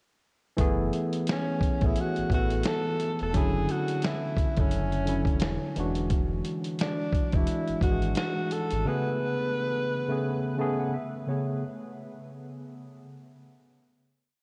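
Cosy and dreamy, this short lo-fi hip hop piece in A major moves at a relaxed 87 BPM in 4/4, with a gentle swing on the sixteenths. A worn, slightly out-of-tune tine electric piano sits up front from 0.6 seconds, playing rhythmic drop2 chords with grace notes, repeated like a sampled loop over F#m11, Dmaj9/F#, E9 and Amaj9, before closing with a short fill at 10.2 seconds. Underneath, a deep, sine-toned sub bass with octave plays a sparse, sustained line with muted ghost notes, while a gritty, compressed soul sampler-style drum kit lays down a laid-back beat with a thumpy kick, medium-tuned snare and sixteenth-note hats, both dropping out just before 9 seconds. A mellow tenor saxophone enters at 1.3 seconds with a solo, jazz-style melody built from call phrases, its subtone, vibrato and scooped notes trailing into delay. The whole mix is soaked in a long cathedral reverb with a cassette tape character, giving it a hazy, nostalgic glow.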